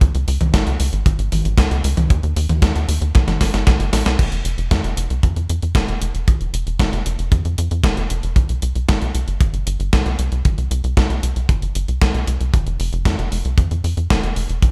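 A tight, punchy sequencer bass with a sawtooth bite and filter-pluck attack drives this bittersweet, danceable italo disco excerpt at 115 BPM in straight 4/4, sitting up front alongside a natural acoustic kick drum in a small room. A gated 80s digital drum machine with a sampler-style, tape-warm character supplies crash cymbal, hi-hat, toms and a gated reverb snare. A drum fill from 3.1 to 4.2 seconds leads into a new section, with the bass evolving and saturated throughout.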